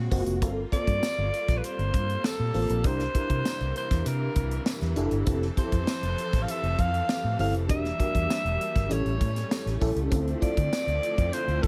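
A raspy, gritty alto saxophone carries the melody from 0.7 s over a glassy, bell-like FM electric piano with ensemble chorus, lush bowed strings, a dark, foam-muted fingered bass, a tight funk drum kit with a high-tuned snare, and a jingly tambourine sitting distant in the background, all in a slick, nocturnal 1980s jazz-funk pop cut.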